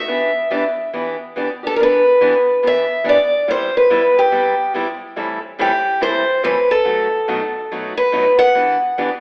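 This short excerpt, cut from a longer piece, has a telephone-like sound, with two players together in one room and a large studio reverb lingering for about 1.2 seconds. It is swinging, virtuosic jazz in E minor at 142 BPM in 4/4, with a moderate swing of about 62% on the eighth notes. Two picked steel-string acoustic guitars, both bright and boxy parlour instruments with fresh strings, play throughout the roughly 9 seconds. The lead guitar sits up front and carries the melody between G4 and F#5. The second guitar comps underneath, lower in the mix, where finger squeaks can be heard. The harmony runs from Em7 through Cmaj7, Am7 and B7 before coming back to Em7 at 8.5 seconds.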